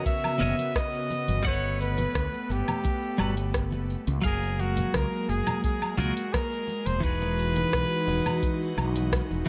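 An overdriven deep house groove in straight 4/4, with a dry, deep electronic kick and a layered kit of hi-hat, rim click, shaker and woodblock, sits alongside warm acoustic congas in the background and a dark, round fretless bass up front. An airy, breathy pad with chorus sustains chords that move from Bmaj9 through Gmaj9 and F#maj9 to Emaj9, while a clean, twangy picked electric guitar adds accompaniment through tape echo and shimmer reverb. Over this blissful sunset chillout excerpt, a clear, vintage flugelhorn sings a jazz-style solo melody with scooped notes, also bathed in tape echo and shimmer.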